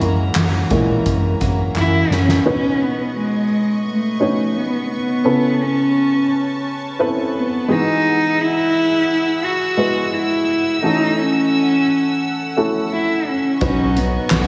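Bathed in a lush hall reverb with a big arena sound, this hopeful piano-driven pop excerpt opens with a mellow, woody upright piano solo carrying slapback echo, joined by a drum fill from a soft-mallet kit with a fat snare and boomy kick, while an up-front, dark bowed cello with vibrato takes the melody from 1.8 s over floating sul tasto string chords, as a bright picked steel-string acoustic guitar riff, a round analog bass, the drums and a very quiet, hollow group handclap fall away by 3.0 s before returning from 13.6 s, the handclap only at 14.3 s.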